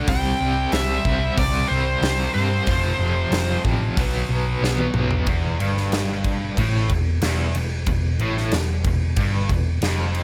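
A high-gain lead guitar, bright and up front with a slapback echo, carries a short melody that stops at 3.6 seconds in this menacing, aggressive hard rock clip cut from a longer piece. Beneath it, a double-tracked overdriven semi-hollow guitar with tremolo and a tight, double-tracked distorted guitar drive the riff over a dark, round hollow-body bass, while a big acoustic rock kit with a punchy kick and medium-tuned snare sits close in a small room. The harmony moves through C, F and B5 before a drum fill at 4.6 seconds leads into a new section settling on E minor at 5.3 seconds.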